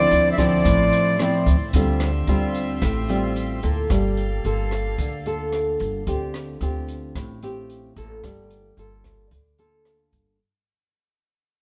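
A breathy, chiffy jazz flute opens this smooth, melancholic bossa nova fragment in D minor at 111 BPM, sounding only a short phrase up front before dropping out at 1.5 seconds over a dark, fingerpicked nylon-string guitar, a woody, thumpy pizzicato upright bass and a distant, floating sul tasto string section. Guitar and bass carry on through minor ninth and eleventh chords as an open jazz kit adds hi-hat, rim click and a boomy kick, with a grainy shaker tucked in the background. The strings fall away at 6.0 seconds, and the whole piece, set in a moderate studio reverb, fades out from 1.7 seconds.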